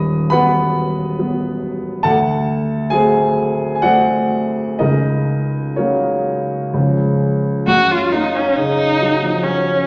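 Moving in a flexible, rubato 3/4 at roughly 60-71 BPM, this lyrical, serene romantic classical duo for viola and grand piano is a short passage taken from a longer work, tuned to A4 = 441 Hz. The grand piano, dark and mellow and placed up front, opens alone as accompaniment across a range from D#1 to D#6, moving through B/D#, D7, F#/C# and C#. At 7.7 seconds the harmony arrives on F# as the viola enters with the melody, staying within a compact span from C#4 to F#4. The bowed viola is a single player, clear and focused with a smooth top and vibrato, sitting up front and slightly louder than the piano. Both instruments sit in a recital hall with a generous, wet reverb of about 1.5 seconds.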